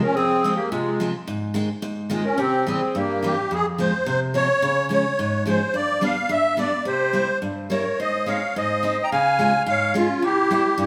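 A live stone-room recording with a wet reverb tail carries this bouncy, jolly alpine folk dance at 108 BPM in 2/4, cut from a longer piece and turning to F harmonic minor at 3.5 s. From the start, a close, reedy, shimmering musette accordion leads the melody up front, a bright classical-style clarinet adds a second line that drops out at 3.4 s and returns at 6.9 s, and a picked steel-string acoustic guitar accompanies with audible finger squeak.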